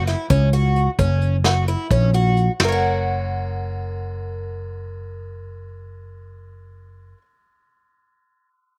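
A woody, shimmering picked twelve-string acoustic guitar plays octave-doubled arpeggios with a slapback echo up front in this bright, driving progressive instrumental in 7/8, cut from a longer piece, over a dark, round fretless electric bass and a vintage brush drum kit with a punchy kick and rolled-off top that drops out at 2.7 seconds, all captured dry outdoors with little reverb.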